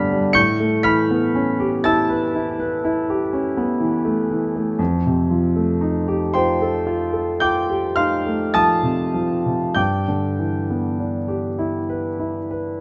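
A clear, up-front concert grand piano plays alone in this serene, dreamy impressionist classical fragment, drifting in a rubato 9/8 across a range spanning F2 to D7 with deep bass and long sustain, its A9 chord at 0.4 seconds giving way to F9 at 4.8 seconds and G6 at 9.8 seconds, heard through close, detailed microphones in a moderate recital hall reverb and tuned to A4 = 435 Hz.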